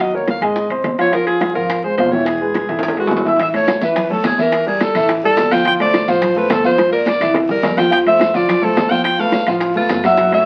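Afro-Cuban jazz at a brisk 212 BPM in 4/4, this lively, danceable fragment of a longer piece comes through the crackle of a very old 78 rpm record, set in a wet studio reverb. Up front, a bright alto saxophone takes the solo melody in a jazz style, with light vibrato and scooped notes, while a grand piano accompanies with an intimate, natural tone, long sustain and audible action noise. Beneath them, a woody, thumpy pizzicato upright bass on steel strings sits in the background alongside close percussion: soft-handed, dry congas, high-tuned and ringing, and round, low-tuned bongos, plus ringing metal-shell timbales. Drum fills arrive at 2.7 and 6.8 seconds, and a raspy, compressed, saturated guiro joins at 3.4 seconds as the second section begins. The harmony moves restlessly from Ebm7 through chords such as Dbmaj7, Aadd9, Edim and Dm7 to a closing C#aug7.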